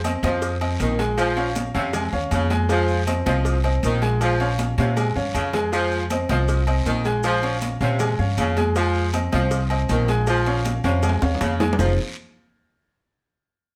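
Driving and danceable, this salsa excerpt rides a straight 4/4 groove that alternates between Fm7 and Bbm7 chords. A growly, woody upright bass sits up front with thumpy pizzicato lines, while a bright upright piano with short sustain supplies brilliant accompaniment throughout. From 0.2 seconds a clear saxophone section adds a low second line with light vibrato and a slapback echo. The percussion stays in the background: ringing high-tuned congas struck with hard hands, metal-shell agogo bells and timbales, a raspy guiro and grainy maracas. Tight, compressed cowbell and bongos sit very quiet in the mix, and drum fills arrive at 4.8 and 10.8 seconds before a brief new section opens at 11.8 seconds, all under a light reverb.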